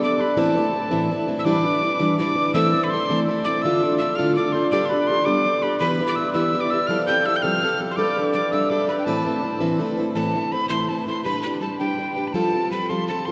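Drenched in a long cathedral reverb, this spirited, driving Celtic jig in A minor moves at 110 BPM in 6/8, cut from a longer piece. A breathy, mellow metal whistle with vibrato and a chiffy attack carries the melody up front, slightly unsteady, while a shimmering, ringing hammered dulcimer plays a second line until 12.0 s. A picked, plugged-in steel-string acoustic guitar with audible finger squeaks sits forward with the accompaniment through chords such as Amadd9, Em7, Dm and Gadd9, and a new section begins at 10.2 s.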